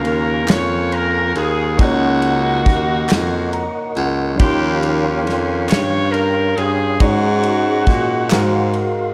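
A bright, tight saxophone section opens this short slice of slow gospel in Db major, carrying the melody with light vibrato over a soul drum kit, a baritone saxophone bass line, an upright piano and a tonewheel organ, all entering together at a reverent 46 beats per minute in a straight 6/8. The drum kit sits up front with a tight kick, a medium-tuned snare and dark ride cymbal in a small, rolled-off room sound, while the baritone saxophone anchors the low end with a jazz-style vibrato of its own. The upright piano is woody and intimate, its action noise audible, and it steps forward with a fill from 3.1 to 4.4 seconds. Behind it, the organ holds soft, flute-like chords colored by percussive second-harmonic attack, chorus vibrato and a slow rotary speaker. A very quiet, crisp group handclap joins at 0.5 seconds, and the harmony moves from Db6 through Gb6/Db and Eb13 to an Ab7sus4 resolving onto Ab13, all under light reverb for a soulful, devotional glow.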